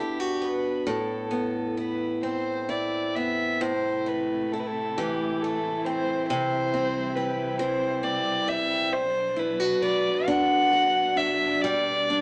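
A large studio's moderate reverb frames this mournful, haunting Celtic slow air in A dorian, moving freely in 6/8 around 45 BPM in an excerpt cut from a longer piece. Up front, a single dark, woody fiddle carries the melody with light vibrato over a bright, boxy parlour steel-string guitar whose picked accompaniment lets finger squeaks slip through. At 3.6 seconds a lush symphonic string section enters lower in the mix with sustained chords, its vibrato and portamento adding an expressive richness as the harmony moves through Am, C and Bm before settling on G.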